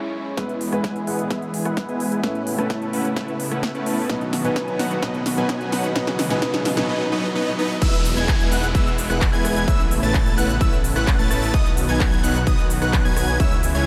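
Festival progressive house in E major at 129 BPM, this anthemic, euphoric passage cut from a longer piece moves through E, Aadd9, B and C#m under a dreamy, reverb-soaked mix. A warm concert grand piano with subtle chorus, sidechain pumping and delay opens alongside a lush, warbling pad that sits in the background with slow attack and long release, and faint swells, risers and downlifters creep in from 0.1 seconds to add tension. From 0.4 seconds the build-up begins: huge supersaw chords ride up front under a filter sweep, and a thick, menacing detuned saw bass stays very quiet beneath. A punchy, overdriven electronic kick leads the drums, joined by a layered kit with crisp hats, punchy snare, claps, rim clicks, cabasa and cymbals, with a drum fill running through most of the build. The piano stops at 7.8 seconds as the drop arrives, and a bold, bright, wave-folded unison lead with vibrato enters with high arpeggios carried on delay and pumping against the kick.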